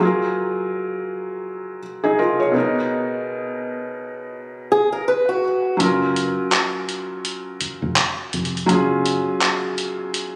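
Tender and smooth, this contemporary R&B excerpt opens on a felt-muted upright piano, soft and intimate with audible action noise, playing chords alone until a fingerpicked swing-style acoustic guitar adds boxy arpeggios with tape echo at 4.7 seconds. At 5.8 seconds a gritty, sampler-style drum kit of handclaps and hi-hat arrives up front alongside a deep dub fingered electric bass, dark and round with a foam-muted tone. Light club reverb and compression give the whole a phone-in-the-room sound.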